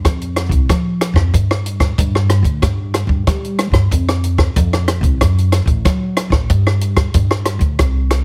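A woody, plucked upright bass with steel strings sits up front alongside a compact cocktail drum kit of punchy kick, hi-hat and rim click in this playful, sunny samba and choro fragment at 93 BPM in 4/4, both parts playing throughout the 8.2 seconds of a dry, heavily compressed, radio-like sound.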